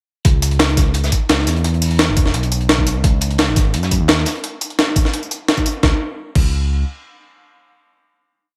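This is a short, complete liquid drum and bass piece in C# minor at 172 BPM in a straight 4/4, with a dreamy, rolling mood. It is essentially one drop from the opening moments, built on a layered, knocking electronic kick with a tape-warm character and a two-step feel. Up front sits a sampler-style breakbeat kit, compressed, pitched up and gritty, with a high-tuned snare, closed and half-open hats, tambourine and crash, re-recorded in a large room and playing rolling two-step drums. Behind it, a crunchy acoustic break with a medium-tuned snare is saturated and rolled off at the top, with high-pass filtering on its hats, snare and room; this looped, edited break drops out at 4.4 seconds. The bass is a smooth, dark synth blending sawtooth and triangle, detuned with a moving notch, vibrato and portamento, holding long gliding notes between E1 and F#2. The sound stays dry with little reverb, and the bass rings on as a final note until 6.8 seconds.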